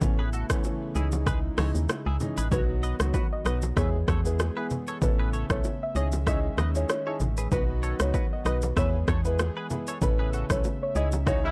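Afrobeats at 96 BPM in E major, sunny and breezy, with a gentle 16th-note swing, cut from a longer piece. An up-front deep house drum kit with a punchy, layered kick, hi-hat, rim click and shaker sits over a hollow, organ-like FM bass that is dark and percussive, while ringing congas and bongos add acoustic colour in the background. A grand piano with an intimate, boxy tone and audible action noise plays accompaniment, and a smooth, detuned sawtooth pad holds sustained chords in the background, shimmering with chorus and pumping with sidechain. From 0.2 seconds a bright, twangy clean guitar, recorded direct and compressed, picks a riff through analog chorus and tape echo. At 2.5 seconds a soft, round pluck carries the melody, a band accent arrives at 10 seconds, and a tight horn section with light vibrato enters at 11.4 seconds, over chords cycling from Aadd9 through C#madd9, B and E. The whole mix is dry and gritty, with transformer saturation giving it a hardware edge.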